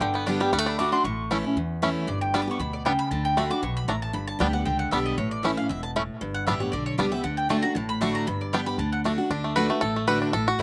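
Driving and rustic, this swung bluegrass fragment opens with a mandolin solo of double-string stabs, woody and up front with a slapback echo, until a twangy, fingerpicked banjo takes over the lead at 9.3 seconds, all over a full-bodied picked dreadnought guitar and a thumpy pizzicato upright bass on gut strings, captured outdoors with a dry, open-air sound.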